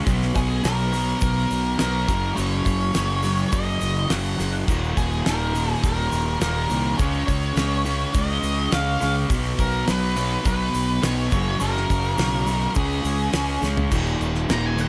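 Set in a small room, this driving, swaggering classic rock passage pairs a sludgy overdriven guitar with a raw garage guitar tucked in the background on the riff, while a round, punchy fuzz bass sits up front over a dry, damped 70s drum kit with a fat snare, tight kick and dark cymbals, a grainy, bright egg shaker murmurs behind, and from 0.4 seconds a dark octave-fuzz lead guitar carries the melody through tape echo before a drum fill at 13.6 seconds.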